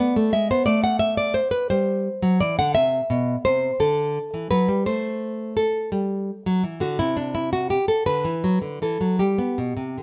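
A solo fingerpicked nylon-string guitar opens this radiant, flowing baroque-style classical dance in G major, moving in a rubato 6/8 at roughly 51-59 BPM counted in dotted quarters. The guitar's small, warm acoustic tone sits up front, ranging from B2 to F#5 as the harmony passes through G#dim, Am, C and D before settling on G at 9.2 seconds. A moderate stone-room reverb surrounds the live performance, and this ten-second passage is cut from a longer piece.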